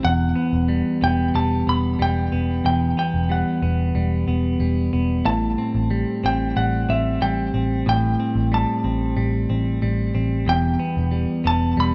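Dream pop in a hazy, haunting mood, this brief excerpt sets a high semi-hollow electric guitar melody with digital delay over clean, twangy electric guitar arpeggios touched with subtle chorus and delay, while a dark, foam-muted, round vintage picked bass holds the low end through Emadd9, Am7 and Em chords, all in a rough home demo mix with light reverb and a dulled top end.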